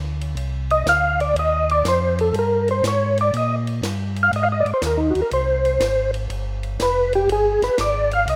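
A rough home-demo mix with light reverb and small-room ambience frames this smoky, bluesy soul jazz organ trio excerpt, where a round, dark, clean tonewheel organ with key click and a slow rotary speaker carries the bass from the start, a dry, natural compact cocktail drum kit with dark cymbals and a high-tuned snare joins at 0.2 seconds on hi-hat, ride and snare, and a soft, flute-like percussive tonewheel organ with second-harmonic percussion, chorus vibrato and its own unhurried rotary speaker takes the up-front solo from 0.7 seconds over a swung Cm7, Ab and Fmadd9 progression.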